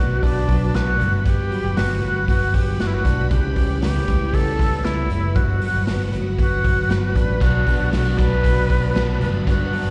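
A breathy, mellow concert flute carries the melody with slapback echo and digital delay over soft string-machine cello chords and chorused clean electric guitar arpeggios, with a round, foam-muted picked bass underneath; a gritty, punchy garage drum kit on hi-hat, kick and snare joins at 0.2 seconds, and the bittersweet, restless jangly indie pop at 117 BPM moves through Bm, Gmaj7 and C#m7b5 until an overdriven electric guitar adds accompaniment with slapback echo at 7.4 seconds, the performance captured live through a venue PA with a recital hall's reverb.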